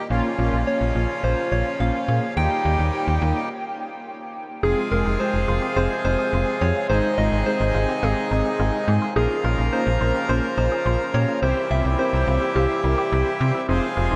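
A dreamy mix soaked in a huge, wet ambient reverb gives this melancholic, nocturnal synth-pop fragment a hazy, night-time glow. It moves at 106 BPM in a straight 4/4 in F minor. A close-miked, reedy accordion holds full, dry sustained chords while mellow synth brass, dark and round with chorus and vibrato, fills in the accompaniment. Up front, a snappy FM bass with a metallic, digital attack anchors the low end. A soft, keys-like struck synth lead carries the gentle melody through chorus and a diffuse ambient delay. After a stop from 3.5 to 4.6 s, the harmony shifts from Bbm and Eb to a passage through Fm, Ab, Bbm and C, and at 4.6 s a very quiet, squelchy, resonant blip pluck enters with phaser-tinged arpeggios that run until the fragment is cut off.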